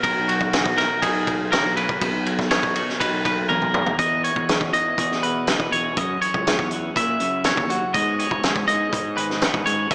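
This bright, intricate math rock and midwest emo excerpt opens with everything playing at once: a twangy electric guitar up front picking arpeggios with a slapback echo, a twelve-string electric guitar picking an accompaniment in the background, a fuzz-drenched fingered bass, and a loose indie drum kit. The tempo sits at 122 BPM in a straight 4/4, in E lydian, moving from Bmaj7 into Emaj9, F#7(no3) and G#m7. The drums sound acoustic and mid-forward, with a fat snare, punchy kick and a rolled-off top across hi-hat, ride and toms, and a fill from 3.5 to 4.0 seconds leads into the second section. The lead guitar is clean and compressed, the twelve-string adds a bright twang beneath it, and the bass growls with overdrive. A lush hall reverb gives the mix a big arena sound, while it also carries a small-speaker character.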